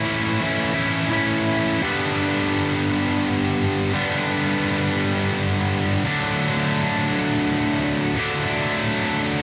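Rock in a straight 6/8, bittersweet and anthemic, with a lone high-gain distorted electric guitar carrying the whole 9.4-second passage, bright, picked and double-tracked up front. The chords move from A to G at 1.8 seconds, where the feel drops into half time, and settle on D at 6.0 seconds. Digital ambience surrounds the guitar, and the cassette home recording lends the sound a homespun grain, as this fragment is cut from a longer piece.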